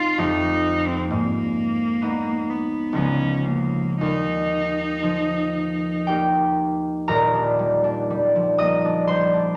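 In a rubato 3/4 drifting between 54 and 66 BPM, this dreamy, pastoral impressionist duo in Eb major, tuned to A4 = 438 Hz, pairs a rich, focused bowed cello carrying the melody between Bb3 and F4, with vibrato and a smooth top, against a bright, ringing fingerpicked concert harp spanning Eb1 to Eb6. Both instruments sit up front in a wet recital hall, with harmony moving through F9, Abm6 and Db7 to Ebadd9. The cello falls silent at 6.1 seconds, leaving the harp alone to settle onto Ebmaj9 at 7.1 seconds before this fragment of a longer piece breaks off at 9.6 seconds.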